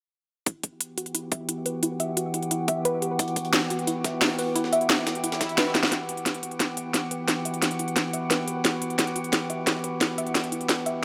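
Straight 4/4 drum and bass rhythm drives this dark, futuristic fragment, where an up-front kit of cracking snare and crisp hats is joined by a tight, tape-warm electronic kick until 5.5 s and a gritty, pitched-up breakbeat kit in the background, while an eerie, metallic FM drone holds sustained chords and a soft, round, wave-folded pluck plays delayed arpeggios, both with chorus, sidechain pumping and filter sweeps through the first half, before a background swell and a drum fill at 5.7 s lead into a build-up that carries on to the end, all set in a lush hall reverb.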